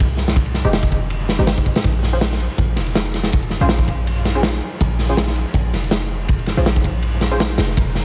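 Frenetic yet atmospheric, this drum and bass and jungle excerpt runs at 162 BPM in 4/4 with a swung sixteenth-note feel and a slightly flat tuning. A raw garage drum kit of kick, snare, hi-hat and ride cymbal sits up front for the whole 8 seconds, its acoustic sound gritty and saturated in a bright stone room that pumps, with a punchy kick, a medium-tuned snare and a rolled-off top. Beneath it, an 808-style bass holds the low end from F1 to C2, deep and boomy with a sine core, a noise layer and tube saturation, each note striking fast and decaying. From 0.6 seconds a filtered dub chord stab sits in the background between Ab3 and C5, its muted, detuned sawtooth and triangle tones plucked short through lush chorus and dub echo over F minor and B-flat harmony. At 7.8 seconds a reversed, granular texture swells in very quietly on Bb5, dreamy and bright, while vinyl crackle and studio reverb tint the whole mix.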